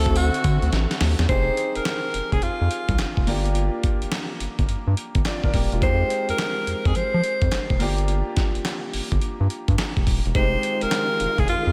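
R&B in a new jack swing vein, this punchy, confident excerpt moves at 106 BPM in F dorian with a swung sixteenth-note feel. A bright alto saxophone carries the jazz-style melody up front, with light vibrato, scooped notes, slapback echo and digital delay, over a brilliant concert grand piano with long sustain and its own slapback. A round, deep analog bass with a filter pluck and fast attack anchors the low end, and a gritty, compressed sampler-style kit of thumpy kick, medium-tuned snare, hi-hat, handclaps and tambourine sits up front, with a fill at 0.7 seconds. Lush bowed strings with vibrato and portamento hover distantly at the opening and return from 10.3 seconds, while a moderate hall reverb gives a big arena sound.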